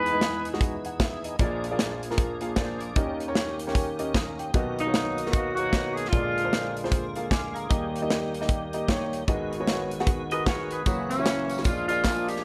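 Uptempo gospel at 152 BPM with a solemn, fervent swing, cut from a longer piece, where a punchy, vintage saxophone section states the melody in short bursts up front over a clear, boxy grand piano that adds a fill at 7.1 seconds, a full tonewheel organ with key click and fast rotary shimmer, and a tight acoustic drum kit, while a twangy, compressed electric guitar adds a brief second line at 10.3 seconds before saturated tambourine and handclaps enter in the background at 10.9 seconds, all in light small-room reverb.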